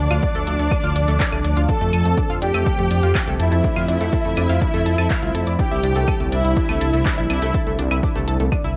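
A deep, rumbling detuned saw bass sits up front in this melancholic, dramatic melodic techno excerpt in D minor, running at 123 BPM in a straight 4/4 and breathing with sidechain pumping. An overdriven electronic kick and a punchy analog drum machine with claves, handclaps and hi-hat carry the beat, both colored by cassette tape. A soft supersaw melody with phaser and tape echo is joined by a distant, lush symphonic violin section on a second line, and both drop out at 7.5 seconds. A bright analog pluck spins arpeggios through analog chorus and tape echo, while a moody pad built from square and saw waves holds sustained chords in the background. The harmony moves from Dm7 to Cadd9 at 5.6 seconds, and the mix carries light reverb and the muted top end of a home cassette recording.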